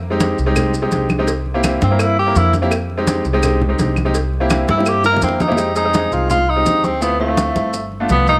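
A dark, thumpy pizzicato upright bass on gut strings and ringing background congas open this fiery, sultry Afro-Cuban jazz excerpt in F minor at 167 BPM, joined at once by a brilliant, up-front grand piano, a very quiet round cowbell and bongos played with hard hands, grainy maracas and compressed, saturated claves. A subtoned tenor saxophone solo with scooped notes sounds briefly at 1.8 s and returns at 4.7 s, distant and roomy yet up front, as a drum fill leads into a new section at 5.6 s. The harmony moves between Fm7 and C7 before turning through Dm7 to G7, all bathed in a wet spring reverb.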